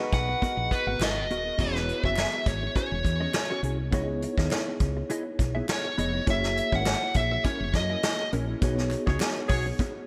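A smooth, overdriven lead guitar carries the melody up front in this slick, bittersweet stretch of polished 1980s jazz-funk pop, cut from a longer piece and moving at 102 BPM in 4/4 with a light 16th-note swing over G#m9, E69, C#m9, F#7 and B69. Beneath it, a mellow tine electric piano with analog chorus and a dark, clean electric guitar riff fill out the harmony, while a woody, round fretless bass with ensemble chorus and a vintage brush kit with gated reverb and dark cymbals hold the groove, joined from 1.0 seconds by very quiet, crisp handclaps. A jazz-style horn section plays a second line at the opening and returns near 9.1 seconds during a band accent that begins at 8.6 seconds, all framed by bright digital production and small-room ambience.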